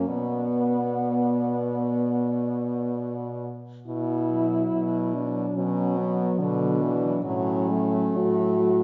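A solemn, yearning classical passage for horn quartet, cut from a longer piece, opens at once with all four French horns in a rubato flow: a mellow, distant horn with light vibrato carries the melody up to D5, a second mellow horn with a smooth top sings the inner line, a clear, close-miked horn supplies background accompaniment, and a soft-attacked clear horn holds the bass up front, the whole sounding from further back in a wet scoring stage, moving from B minor harmony toward F#m/A at 7.3 seconds.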